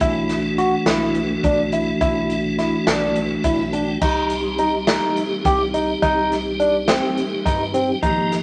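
A brooding, intricate progressive instrumental in 7/8 at 210 BPM opens with an overdriven, barky tine electric piano playing phased arpeggios up front beside a piping, scooped tonewheel organ whose key click, chorus vibrato and fast rotary speaker color its accompaniment. Underneath, a woody, round fretless electric bass sits in the background while a swinging big-band drum kit adds dark cymbals, a medium-tuned snare and a punchy kick with an airy, polished hall sound. The organ plays a fill from 3.2 to 4.0 seconds, and at 4.0 seconds the harmony shifts from Bsus4 to Cm, with the ensemble set in a studio reverb as this cut from a longer piece moves into its second section.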